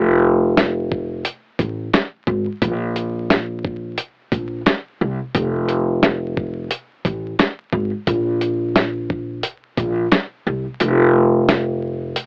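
A woody, gut-strung pizzicato upright bass with tube saturation opens this gritty, reflective boom-bap hip-hop fragment, swung on the 16ths, and is joined moments later by a dusty, sampler-style soul drum kit with a thumpy kick, fat snare and hi-hat sitting up front, all coloured by light reverb, vinyl crackle and a cassette-and-AM-radio haze until the kick drops out at 10.8 seconds.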